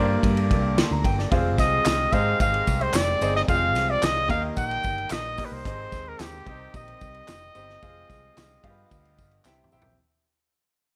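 An up-front, mellow trumpet carries the melody through this driving, urgent stretch of uptempo 1960s-style soul, cut from a longer piece and fading out throughout. A bright baby grand piano with audible action noise and long sustain plays the accompaniment, a tight French horn section holds sustained chords in the background, and a dark, foam-muted vintage electric bass gives a round, punchy low end. A natural, up-front drum kit with a fat snare and punchy kick drives the groove, close and dry tambourine and group handclaps join at 1.6 seconds, and a drum fill arrives at 9.5 seconds, all set in a light reverb.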